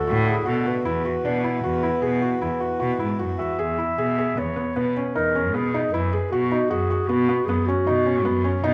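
Hopeful and shimmering, this excerpt of contemporary chamber music in 7/4 sets a dark, distant clarinet melody over soft, intimate arpeggios from a felt-muted upright piano, a clear, focused bowed cello bass with vibrato sitting up front, and reedy, breathing harmonium chords that fall away at 3.6 s as the music moves into its second section, the ensemble placed in a moderate recital hall.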